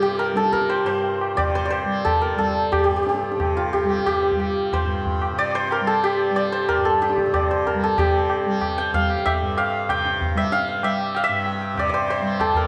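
A santur, tanpura and tabla sound together from the opening moment of this Hindustani classical passage in raga Bageshri, cut from a longer performance and carrying a solemn, introspective mood. The hammered santur sits up front with a bright, shimmering tone, its melody ringing through a slapback echo and plate reverb in the middle register. Beneath it, a softly plucked tanpura holds a buzzing low drone, while low-tuned tabla sound distant, as if set in a large room. The pulse gathers speed throughout, and a new section begins at 8.0 s before the cut at 12.7 s. The production is dark and warm, wrapped in a moderate studio ambience.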